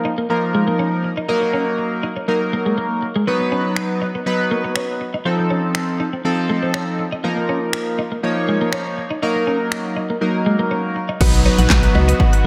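A glossy, pumping chorused polysynth accompaniment and a bright, twangy twelve-string electric guitar riff open this confident, energetic dance-pop excerpt, with a punchy, up-front house drum kit of kick, snare, hats, snaps, claps and crash arriving at 3.8 s, and at 11.2 s a hollow organ-like FM bass, a detuned supersaw swell, a woody mallet-like pluck arpeggio and a background downlifter all join inside a dreamy hall reverb.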